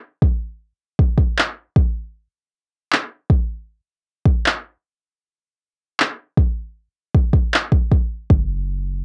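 Contemporary R&B at 78 BPM in 4/4 with a straight feel, carrying a longing, late-night mood in this short clip cut from a longer piece. A smooth, electronic R&B drum kit sits up front from 0.2 s to 8.5 s, its soft kick and handclaps roughened by overdrive and re-recorded in a small room. At 8.3 s a clean 808-style bass enters, deep and boomy with a sine-like tone, a fast attack and a mellow decay, sounding low at F#1 and also placed up front. The bass carries on alone after the drums stop, closing out the 9-second passage. The sound is dry, with little reverb, and has the intimate grain of a home recording on cassette.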